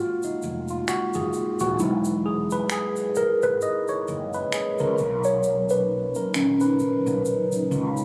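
Neo-soul R&B at a slow 66 BPM with a swung sixteenth feel, this sensual, soulful passage cut from a longer piece features a worn, slightly out-of-tune tine electric piano up front, soloing through a phaser over F#maj9, Emaj9 and Bmaj9 chords. A dark, round fretless electric bass with ensemble chorus and a light egg shaker and finger snaps join at 0.2 seconds, and a hollow, flute-like soft pad drifts in behind at 5.4 seconds. The sound is that of a phone recording in a small club room, compressed and lightly reverberant.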